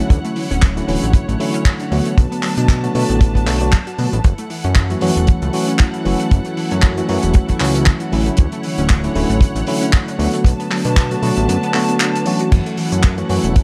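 A worn, slightly out-of-tune tine electric piano opens this groovy, sensual nu-disco excerpt, sitting up front with a filter sweep, slapback echo and sidechain pumping, joined at once by a dark, woody studio string section holding soft-attack bowed chords with light vibrato and a very quiet, bright detuned pluck spinning arpeggios. A moment later a fat analog bass enters with a thick, tube-saturated sawtooth tone, fast attack and its own filter sweep. A dry, tight kick drives the swung groove from the front of the mix, while a damped 70s drum kit adds handclaps, hi-hat and dark crash cymbal. The harmony moves through Dmaj9, Bm7 and F#m7 under a generous studio reverb. Near the end the kick drops out between 11.5 and 12.5 seconds before returning for the final bars.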